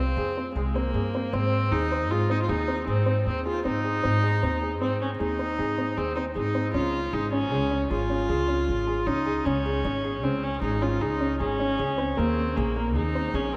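Contemporary chamber music in an urgent, restless 7/4, cut from a longer piece, where a reedy, bowed solo viola carries a second line with light vibrato over boxy felt-muted upright piano arpeggios, whose action noise sits close and intimate, and a woody, thumpy pizzicato upright bass, all set in a vast, echoing cathedral reverb as the harmony moves from Fm through Ab and Db to Ebsus4.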